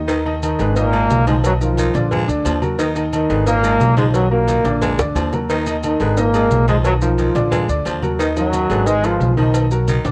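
A bright, punchy trombone section carries the melody up front with light vibrato, entering at 0.4 seconds over a woody, thumpy pizzicato upright bass and a clear, worn baby grand piano comping through Abm, Bmaj7 and Bb7 changes, with a turn to Ebm before a final Bmaj7. This driving, danceable salsa excerpt at 178 BPM sets a raspy, breathy baritone saxophone in the background as a second line, while congas, tight high-tuned cowbell and bongos, ringing agogo bells and timbales, and grainy maracas fill out the percussion, with drum fills at 5.0 and 9.9 seconds. Horns and piano share a cassette-tape grit and plate reverb, giving the home recording a lightly roomy, lo-fi cast.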